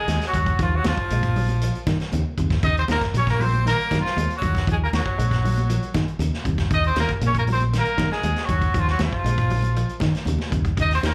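Heard live through a club's PA with only a touch of room reverb, this short afrobeat excerpt moves at 118 BPM in a straight 4/4, hypnotic and driving, resting on a single Ebmadd9 chord in Eb dorian. A clear, up-front trumpet carries the melody with light vibrato, while a raspy, gritty tenor saxophone plays a second line below it; both have slapback echo, as does a dark, clean semi-hollow electric guitar arpeggiating in the background. Underneath, a round, punchy fingered bass sits forward over a vintage drum kit with a rolled-off top, and high-tuned, ringing congas, also touched with slapback echo, sit far back in the mix.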